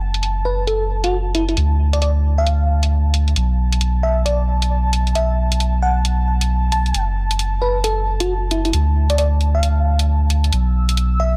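Soulful and moody, this short cut from a longer UK garage piece rides a swung two-step groove at 134 BPM in B minor, moving through F#m, Dm and B7(no3) chords. A round, up-front dub sub bass and filtered, layered electronic hi-hats hold the low and high ends, while an airy, breathy pad with chorus sustains high, dark chords throughout. From 0.5 seconds a bell-like FM electric piano carries the sparkling melody, coloured by chorus, phaser and tape echo, all set in light digital ambience.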